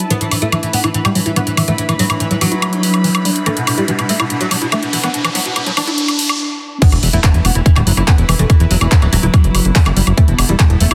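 Intense and alien, this psychedelic trance cut at 143 BPM opens on a woody, plectrum-plucked oud melody with phaser, 12-bit grit and tape echo, over a swarming, granular drone, bowed gut-string ensemble texture, a squelchy, resonant acid bass riff and a drum kit with bright hats, crash, handclaps and woodblock, as filter sweeps build from 0.1 to 6.8 seconds and a riser climbs from 2.1 to 6.4 seconds. After a brief break, the drop at 6.8 seconds brings in an overdriven, tight kick up front and a fat, detuned sawtooth analog bass, with an impact, all in a dense, heavily limited master.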